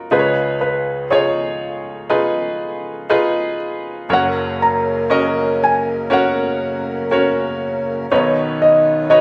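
In a straight 4/4 at 60 BPM, this tender, heartfelt pop piece in F# major, tuned to A4 = 438 Hz, sets a brilliant, up-front grand piano accompaniment beneath a deep-toned, polished concert grand carrying the melody, with a reedy, breathing pedal harmonium entering at 4.1 s to sustain chords as the harmony moves from C#add9 to F# and then Badd9, the band playing together live in one room under a wet large studio reverb.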